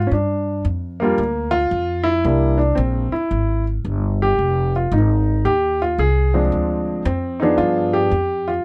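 Swinging and cool, this short excerpt from a longer jazz piano trio piece moves at 112 BPM in 4/4 with a firm eighth-note swing, tuned slightly sharp to A4 = 441 Hz. An intimate upright piano carries the melody in its middle register, its natural tone sitting up front with audible action noise. Beside it, a pizzicato upright bass with steel strings gives a woody, close-miked low line through a chord sequence from Gm7 to G7b9, all in a dry, detailed room.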